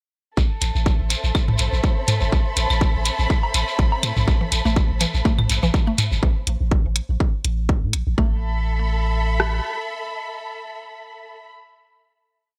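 A cool, quirky minimal techno piece opens with a punchy, sine-like sub bass rolling in a staccato groove beneath a house drum kit's four-on-the-floor kick and rim clicks, while a mellow acoustic shekere plays hand-played sixteenths and a lush, bowed symphonic string section holds slowly shifting chords with vibrato, the bass and strings both breathing with sidechain pumping. An electronic hi-hat adds programmed closed hats, and soon analog-toned electronic claves, low toms and woodblock scatter delayed clicks and blips in cross rhythm. A flickering, granular texture sits far in the background on a single held high note, soaked in its own reverb. At 4.4 seconds a woody, nasal FM pluck with a mallet-like attack joins, looping a five-step sequence that drifts against the bar through chorus and delay. The percussion and texture fall away, and from 8.2 seconds the strings hold a final chord as the bass, kick and hats drop out beneath them, all within a bright 1980s-style digital production with light reverb.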